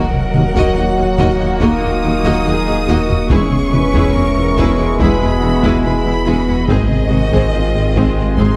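A punchy, deep sine sub bass with a pitch-drop attack anchors this vast, brooding cinematic excerpt at 71 BPM, a hybrid orchestral and electronic film score moving through Ebm, E and Ab beneath a chamber violin section carrying a smooth, vibrato-rich melody over a focused symphonic violin second line and lush violas. Dark, roomy French horns, clear vintage-toned trombones and a shimmering, retro pulse-width pad with chorus hold sustained chords, while cellos, a distant double bass section and a close-miked tuba, the latter two arriving at 0.3 s, deepen the bass. A taiko ensemble struck with heavy sticks enters at 0.1 s, all set in a dark production with moderate scoring-stage reverb.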